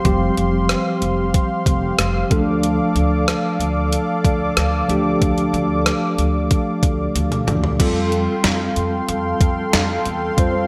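1980s-style pop, moody and dramatic, at 93 BPM in a straight 4/4, cut from a longer piece. A clean tine electric piano played through its built-in speakers carries the accompaniment beneath a smooth, detuned sawtooth analog pad with a soft attack and chorus. A pizzicato upright bass with a woody steel-string tone holds the low end, and an up-front, sampler-style 12-bit drum machine with a thumpy kick, snare, rim click, hi-hat, toms and crash rings out through gated reverb. The harmony moves from Fsus2 to Dm at 2.3 seconds, and a drum fill from 7.2 seconds leads into Fadd9 at 7.8 seconds, all within a lush hall reverb and bright digital production.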